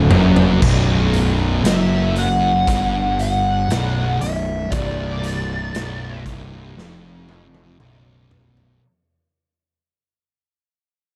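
Hypnotic and brooding, this short stretch of stoner and doom metal is cut from a longer piece and begins to fade out after its opening drum fill. A very quiet, lush string machine chord and a bright, double-tracked distorted electric guitar sound only in the first 0.6 seconds, while two dark, picked fuzz guitars, one set in the background, grind out the low riff throughout. Underneath, a growly, overdriven fuzz bass sits up front, and a raw garage drum kit with a boomy kick, gritty saturation and a rolled-off top thuds through a bright stone room, with another fill arriving at 6.8 seconds. From 1.7 seconds a compressed fuzz lead guitar carries a high melody up front, coloured by wah and slapback echo. The overall sound is dry, with little reverb.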